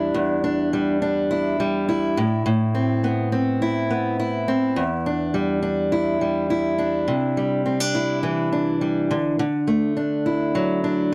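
Reflective and tender, this short pop excerpt, cut from a longer piece, moves at 104 BPM in a straight 4/4 and sits in E minor with a slightly high tuning of A4 at 441 Hz. A lone fingerpicked steel-string acoustic guitar carries the whole 11.1 seconds, ranging from E2 to E4 with a warm, concert tone placed up front. The harmony opens on Em7, passes through Amadd9 and back to Em7, then shifts at 7.1 seconds into a new section built on Cadd9 and Dadd9. The sound is dry and close, in the manner of a 1970s studio recording with little reverb, which keeps the guitar intimate and present.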